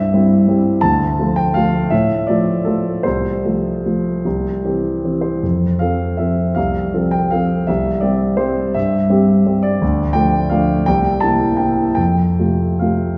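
A warm concert grand piano carries this short classical waltz alone, its deep bass and open, up-front tone filling the whole 13.2 seconds. The mood is graceful and sparkling, with the triple-metre lilt loosened by a rubato feel that lets the phrasing breathe. Harmonies move through simple, familiar changes, passing from C and D minor toward a C7 at 10.9 seconds before settling on F at 12.0 seconds. The piano ranges from low C2 up to A5, giving the passage both weight and shimmer. A generous scoring-stage reverb surrounds the instrument, lending the sound a spacious, glowing tail. The clip is cut from a longer piece.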